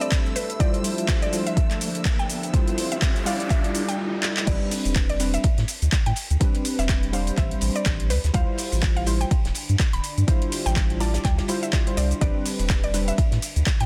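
Deep house at 124 BPM in A minor with a hypnotic, late-night mood, cut from a longer piece, where a riser, noise sweep, warbly tape-like pad, shimmering string machine violins and a filtered dark ambient pad build toward a drum fill at 4.2 seconds and a drop at 4.5 seconds, when a round sub bass and a dry, damped 70s kit join the up-front overdriven kick, metallic-hatted electronic kit, woody mallet-like pluck melody with delay and mellow detuned analog key stabs pumping over Dm11 and Am11 chords in a dense, heavily limited mix.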